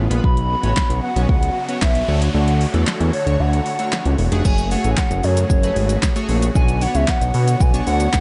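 A straight 4/4 pulse at 114 BPM drives this confident dance-pop excerpt in F# minor, where an up-front deep house drum kit with a deep kick, fat snare, metallic hats, handclaps, shaker and crash drops its kick between 2.3 and 4.5 seconds while a background noise sweep runs from 0.9 to 4.5 seconds. A thick, detuned analog bass pumps against the beat beneath glossy chorused retro synth keys with a filter sweep and huge, lush supersaw chords, both tucked behind, moving through Bsus2, Dmaj7, F#madd9 and Bmadd9. On top, a soft, hollow, woody clarinet-like synth lead carries the melody with vibrato and chorus, all framed in a dark production with light reverb.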